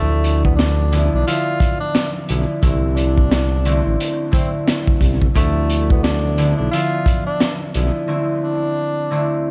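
A breathy tenor saxophone plays a mellow, subtoned jazz melody with vibrato and scooped notes, while a bright, ringing fingerpicked concert harp with cassette-tape colour and analog delay, and a smooth sawtooth-and-triangle synth bass with ring modulation, all start at 0.0 seconds. At 0.2 seconds a crunchy breakbeat drum kit arrives up front, with a punchy kick, a high-tuned snare and hi-hat carrying saturated 12-bit sampler grit, and it drops out with the bass at 7.9 seconds. This gritty, reflective boom-bap hip-hop excerpt moves at 88 BPM with a swung 16th feel in D dorian, alternating Dm69 and C69 chords inside an echo-heavy, reverberant mix with vinyl crackle.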